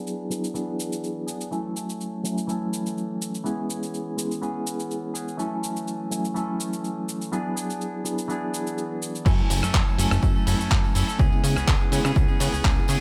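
A reedy electric piano with fast tremolo and phaser opens this groovy, nostalgic filtered disco house excerpt alongside a bright, clean semi-hollow guitar riff, both pumping and muffled under a low-pass filter sweep, while a gritty, tape-warm sampler-style soul kit of claps, hats, rim clicks, shaker and crash joins with a very quiet tambourine. At 9.3 seconds the drop arrives with a punchy, up-front electronic kick and a funky, plucky analog bass with ring-modulated sawtooth and square tones, over cycling minor-seventh chords in a light digital ambience.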